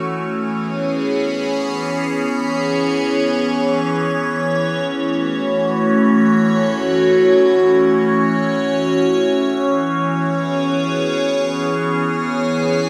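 A lone evolving wavetable pad opens this ambient piece, its slow attack easing in on a C#m7 chord in F# minor. Melancholic yet serene, the music drifts in free time, the pad's morphing, triangle-like tone sounding bright and up front as it spans from E3 to C#5. Its sustained notes and long release are coloured by a phaser, built-in reverb and dub echo, while its unison voicing lends the part a thick, layered quality. At 4.9 seconds the harmony moves to F#m7, opening a new section, before settling back on C#m7 at 9.6 seconds. The mix is echo-heavy and set in a wet echo chamber with a lingering reverb tail, and the recording is cut from a longer piece.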